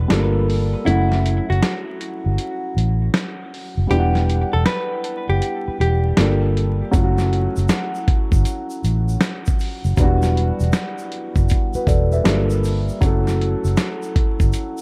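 A worn, slightly detuned upright piano and a round, foam-muted electric bass open this melancholic, reflective lo-fi hip hop excerpt at 79 BPM, with a gritty sampler-style drum kit joining almost at once, its thumpy kick, medium-tuned snare and hi-hat swung on the 16ths. The piano sits up front with a woody, intimate tone, audible action noise and a cassette-tape character, moving through a Gm7, F#m7 and Em7 progression. From 0.9 seconds a clean, picked hollow-body jazz guitar with a dark tone carries a short melody, colored by tape echo, before stopping at 6.4 seconds. At 6.9 seconds a grainy acoustic tube shaker slips in quietly in the background and stays to the end. The mix is echo-heavy, with light reverb, small room ambience and a layer of vinyl crackle that give the piece its dusty, reflective feel.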